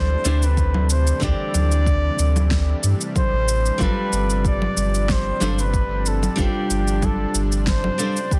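A mellow, close-miked flugelhorn opens this sunset chillout excerpt in G mixolydian, carrying a relaxed solo melody between G4 and D5 with a touch of delay. Beneath it from the start, a fingerpicked acoustic flamenco guitar plays accompaniment through tape echo, a lush, airy unison pad of detuned sawtooth and square waves holds slow-attack chords with chorus, and a round sine sub bass sits up front with deep, sustained notes. Electronic shaker, congas and a fat snare arrive at 0.3 seconds, followed by a layered electronic kick at 0.6 seconds, both tape-tinged and set in studio reverb. The smooth groove moves at 93 BPM in 4/4 with a light swing on the sixteenths, while the harmony shifts from D9sus4 to G9sus4 at 3.8 seconds. A dense, heavily limited modern master and light reverb give the whole a polished sheen.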